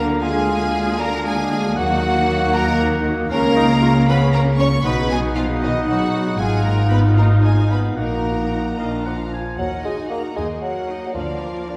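Quirky and mischievous, this whimsical film cue in Eb minor moves in a straight 6/8 at 78 BPM, with a clear, lush violin section carrying the melody while a second violin line, a crisp, airy flute, a background oboe and a very quiet, roomy clarinet weave supporting lines above a mellow bassoon, a rich, soft-attack viola section with portamento, and soft-attack French horn chords. Bowed cellos and an up-front double bass section with expressive slides anchor the bass, and everything sits back in a spacious scoring-stage reverb. The horns, flute and clarinet drop out at 9.3 seconds and the oboe at 9.6 seconds, leaving the strings and bassoon to close this excerpt, which is cut from a longer piece.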